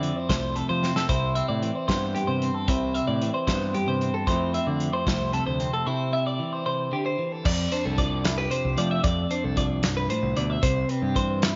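Math rock and Midwest emo meet in this wistful, playful fragment of a longer piece, set in a lilting 6/8 with a straight feel. A bright, twangy twelve-string electric guitar spins compressed, picked arpeggios in a high register, while a warm, clean electric guitar picks out the accompaniment beneath it, both sitting up front. A growling fingered electric bass, overdriven, direct and amped, anchors the low end. The loose indie drum kit has a fat snare, a tight kick and a rolled-off top, and it throws in a fill at 0.8 seconds before settling across crash, hi-hat, kick and snare. The harmony drifts between Fmaj7 and Cmaj7, and at 7.5 seconds a new section opens on F6. A moderate echo-chamber reverb and a dark, soft-edged overall tone give the whole fragment a hazy, intimate glow.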